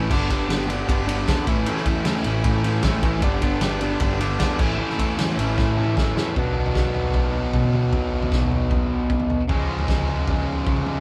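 Jangly and upbeat, this short indie rock clip, cut from a longer piece, has the loose energy of a band playing live together in one room under light reverb. A double-tracked fuzz guitar sits up front, its distorted, compressed riff moving between G and A chords before shifting to B minor and then C sharp. Beneath it, a growling picked electric bass with a round, overdriven tone holds the low end from the background. The loose acoustic drum kit comes in at 0.1 seconds with a fat snare, punchy kick and dark, rolled-off cymbals, its gritty, saturated sound drawing on crash, ride and toms. A drum fill from 5.6 to 6.4 seconds leads into the second section, where the harmony turns toward the minor chord and the band drives on to the cut.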